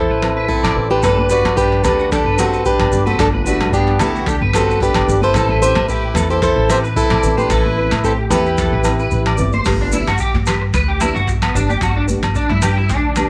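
A sunny highlife guitar band excerpt with a light swing, led up front by a boxy, picked acoustic guitar melody over a trumpet second line with vibrato and scooped notes, while a twangy, slightly broken-up electric guitar plays arpeggios through an ensemble chorus. Woody pizzicato upright bass, a dark, thumb-plucked nylon-string guitar, and a booming analog drum machine with deep kick and crisp snare anchor the groove, alongside grainy maracas, with ringing agogo bells and high-tuned congas filling in the background. The melody guitar and trumpet stop at 9.4 seconds, and a clean electric guitar solo takes over from 9.7 seconds in a small room with light reverb.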